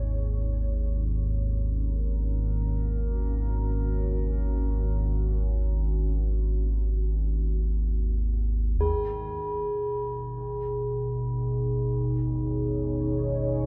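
Bathed in a moderate cathedral reverb, this ominous, vast dark ambient drone drifts in free time, built on a rumbling, wave-folded low drone and a moody, detuned analog pad with chorus and phaser that moves from B to F# before fading out over the first 8.8 seconds. At 8.8 seconds the harmony returns to B, a filter sweep passes over the drone, and a pure, bright quartz singing bowl rings with slow beating beside mellow grand piano arpeggios that sit in the background with delay and audible action noise.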